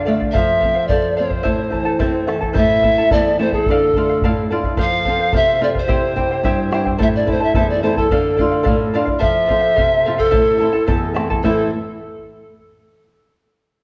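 Bathed in a wet recital-hall reverb and the warbling pitch drift of worn cassette tape, this festive, earthy Andean folk excerpt in A minor moves at 108 BPM in a straight 2/4, with a breathy, woody pan flute carrying the melody through tape echo over a bright, shimmering double-strung charango and an up-front fingerpicked flamenco guitar with audible finger squeak that opens on a brief fill, while a deep, dark, close bombo enters at 0.2 s as the chords cycle through F, Am, Dm and C.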